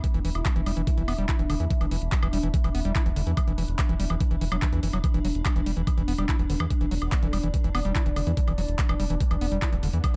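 An overdriven, knocking electronic kick drives this alien psychedelic trance excerpt at 144 BPM, together with a deep, round analog bass, a squelchy, gritty acid bass riff with distortion and digital delay, and an overdriven kit of bright hi-hats, handclaps and woodblock, while a swarming, tense drone and a nostalgic, lo-fi tape-like pad pump beneath in a dark, dry mix, a very quiet formant wobble bass surfaces at 0.4 and 6.5 seconds, and a faint riser appears at 9.7 seconds.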